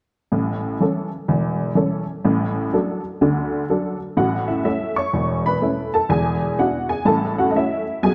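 Stride jazz in a swinging, playful mood, featuring a lone honky-tonk upright piano, detuned and jangly with a woody, vintage character and short sustain, sitting up front in a wet scoring-stage reverb as it moves from A major through D/A and E7 in this brief cut from a longer piece.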